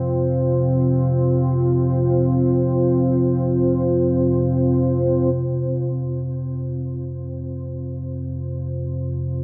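Unsettling and ominous, this dark ambient drone fragment in free time sets a deep, rumbling sawtooth-and-triangle drone beneath a moody, detuned analog pad with a sub octave and chorus, both sustained with slow attacks and sitting up front throughout its 9.4 seconds, bathed in a huge reverb that hangs for 7.3 seconds over a single F5 chord.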